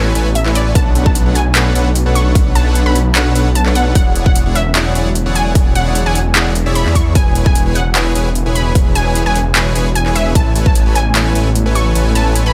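Euphoric and lush, this future bass passage moves at 150 BPM in 4/4 with a half-time feel and a light swing on the sixteenths, set in A major and cut from a longer piece. A very quiet, airy pad holds sustained chords underneath, while a big, bold polysynth with chorus plays a bright riff, pumping against the kick alongside a thick, detuned saw bass that sits up front with saturation and chorus. The opening 0.8 seconds serve as a break before the punchy, overdriven electronic kick arrives, and the kick drops out again at 12.0 seconds. A trap kit with metallic, overdriven hi-hats and handclaps runs nearly the whole way, and from 0.4 seconds a unison pluck carries the melody with tape echo, ring-modulated sparkle and a filter sweep. The harmony moves from Amaj9 through Bm9, E13 and C#m7/E before returning to Amaj9 at 10.4 seconds, all in a dry, close mix with little reverb.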